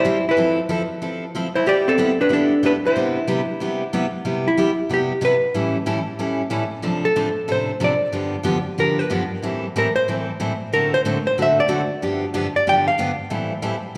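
This playful, cheerful country piece swings along in 4/4, cut from a longer performance and captured live at a gig through the venue's PA. A dark, clean hollow-body electric jazz guitar carries the melody up front, picked and coated in slapback echo, and it steps into a solo at 4.3 seconds before falling silent at 13.3 seconds. Beneath it, a picked steel-string dreadnought acoustic guitar with fresh strings supplies a full-bodied accompaniment, also up front and also treated with slapback echo, holding on until 14.0 seconds. The harmony moves through jazzy colours such as Fmaj7, G6 and Cmaj7, then circles through A7, Dm7/A, G7 and Am7 during the solo. A moderate, lush hall reverb and the club's own ambience give the two guitars a roomy, on-stage glow.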